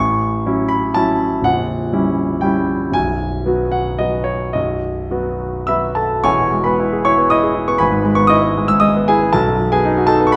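In a flexible rubato three-beat sway, this hopeful, passionate romantic character piece for solo concert grand piano, cut from a longer work, sets a clear, polished tone with deep bass and short sustain up front in a wet recital hall, moving through an opening section before settling into a new section at 6.2 seconds that runs to 10.4 seconds.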